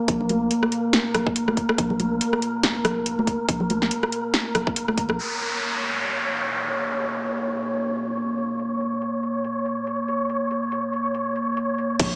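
Meditative and dark, this half-time deep dubstep excerpt opens on a detuned, chorus-lush analog pad and a breathy, wind-like tuned noise texture with its own built-in reverb, while a round, soft dub sub bass sits underneath. Up front, a tight electronic kick joins a deep house kit whose overdriven, punchy snare and metallic hats are filtered, and bright congas with dub echo hover in the background, all framed by a wet digital room that gives a small-speaker character. At 5.2 s the kick, sub bass and congas drop out as a downlifter enters, and the kick and sub bass return with an impact at 12.0 s.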